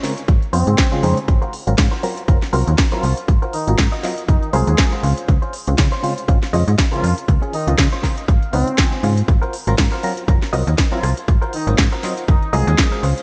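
Filtered disco house at 120 BPM in 4/4 with a light 16th-note swing, sunny and funky, sitting in Ab mixolydian over a loop of Dbmaj7 and Ab13 chords, and cut from a longer piece. A filter sweep runs across the whole 13-second stretch, while a punchy, up-front electronic kick and a house kit with a cracking snare, rim click and crisp hats drive things, the hats pumping against the kick. A snappy FM bass with a metallic, fast attack sits prominently underneath, alongside a barky, reedy electric piano carrying fast tremolo, overdrive, phaser and gritty 12-bit sampler character. A bright, twangy clean guitar played direct with lush chorus plays the riff and adds a fill from 7.8 to 9.3 seconds, and a tight horn section with light vibrato and octave doubling carries the melody through digital delay. A very quiet, close and dry tambourine slips in at 9.3 seconds, all wrapped in light reverb, bright 1980s-style digital production and a faint mains hum.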